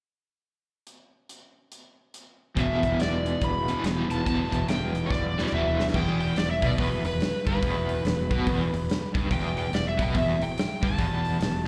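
Heard through a club PA with light reverb and small-room ambience, this brief, smoky and brooding cut from a longer piece of swung blues rock and southern rock moves at 143 BPM in E minor. A big, dark-toned rock kit with a punchy kick opens alone at 0.9 seconds. At 2.6 seconds a growly, fuzz-driven fingered bass anchors the low end while a double-tracked, hollow-body semi-hollow guitar with tremolo pushes a low riff up front. Above them, a bright, overdriven slide guitar played with fingerpicks carries the melody through slapback echo and analog delay, and a drum fill at 5.1 seconds leads into the E minor passage.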